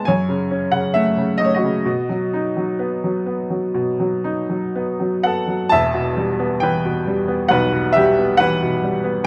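A bright baby grand piano sits up front in a lightly reverberant room, its tone brilliant yet a little worn, with a natural, short sustain. This is a calm, tender passage of lyrical classical solo piano, cut from a longer piece. The playing moves in a gentle 4/4 with a rubato feel, and the instrument ranges from deep E1 bass up to A5. The harmony opens on F#m and moves to B before settling onto an Emadd9 chord at 5.7 s, where a new section begins. The piano plays alone throughout, ending at 9.3 s.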